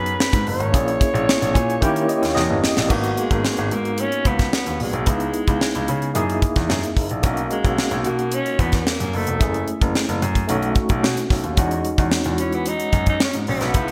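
A growling, breathy alto saxophone melody opens this bittersweet, nocturnal slice of polished 1980s jazz-funk pop in G# minor at 111 BPM, over a barky, overdriven tine electric piano with fast tremolo and lush chorus, a warm grand piano carrying the bass line, and a tight, up-front funk drum kit with a high-tuned snare, bright cymbals and gated reverb that comes in at 0.1 seconds; an electric piano fill and a drum fill lead at 2.9 seconds into a longer section of rich jazz chords like G#m9, F#13 and Bmaj9, all set in a lush hall reverb with glossy digital 1980s production, cut from a longer piece.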